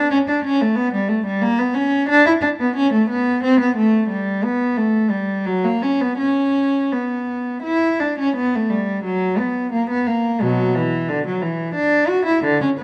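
A lone bowed cello opens the recording, playing a grave, introspective baroque-style suite movement in B minor. Its gut-string tone is nasal and reedy, in a period style, and the single player sits up front in the sound. The pulse moves in 3/4 at roughly 81-92 BPM, stretched through rubato, while the line ranges from B2 up to F#4. A moderate recital hall reverb gives the phrases a gentle halo, and a new section begins at 8.3 seconds before the cello stops at 12.8 seconds, as this is a short cut from a longer piece.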